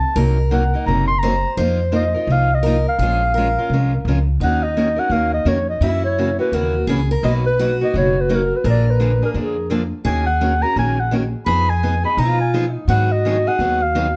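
Swinging and bittersweet, this gypsy-jazz excerpt features an up-front breathy, whispered clarinet playing the melody with subtone, vibrato and scooped notes in a plate reverb, over a bright, boxy picked steel-string guitar with audible finger squeak on a second line, a warm picked steel-string guitar on accompaniment and a woody, thumpy pizzicato upright bass with gut strings, all set in a dark production with a moderate club ambience.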